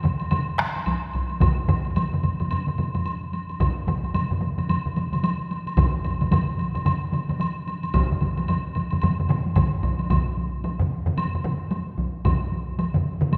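Powerful and ceremonial, this excerpt of Japanese traditional taiko drumming moves at 111 BPM in 4/4 with a swung sixteenth-note feel. It is carried by three taiko ensembles: one struck with heavy sticks in a small room, one with hard sticks that sounds close and dry, and another with hard sticks set in the background. A hard-stick solo taiko sits up front yet sounds distant in a large room, entering at 0.9 s and stopping at 12.4 s, while a woody, far-off woodblock plays throughout; the piece sits in a wet concert hall reverb and moves into a new section at 10.1 s.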